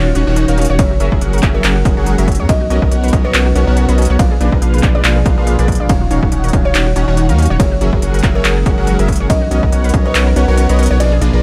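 Future bass in a half-time, swung feel, this emotional, bittersweet excerpt pairs a buzzing, woody kalimba melody with a fat, detuned polysynth riff, a deep saturated sub bass up front, lush wave-folded unison pluck arpeggios and a very quiet, ethereal pad, all but the pad pumping to the sidechain, while a punchy overdriven kick and a trap kit of crisp hats, handclaps and ride drive the Ebm9 to Bb7b9 progression until the kick drops out at 11.0 seconds.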